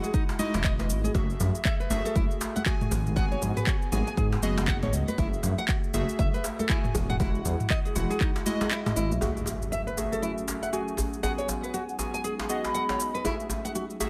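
Afro house at 119 BPM in F# dorian, spiritual and driving, where a fingerpicked nylon-string guitar with finger squeak and round analog key stabs ride a sidechain pump over cabasa, handclaps, toms, cracking djembe, ringing high-tuned congas, an up-front deep electronic kick and a rumbling detuned saw bass, until the kick drops out at 8.7 seconds, an electronic impact lands at 9.2 seconds and a filter sweep moves across the keys as an ethereal pad and a mellow, airy bansuri with vibrato and delay enter, in a passage cut from a longer piece.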